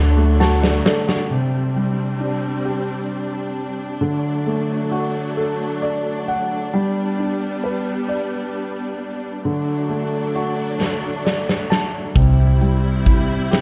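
A tender, romantic pop ballad in a slow 6/8 at 44 BPM opens with warm, up-front concert grand piano, lush bowed strings set distant with vibrato and portamento, and a round, foam-muted electric bass, as a big-room arena drum kit joins with a fill at 0.4 s. The piano, rich in deep bass, adds its own fills over chords moving through D, Csus2 and G, while the bass and drums fall away until the drums return with a punchy kick and snare fill at 10.8 s. The bass rejoins at 12.2 s in this dark, small-room production, cut from a longer piece.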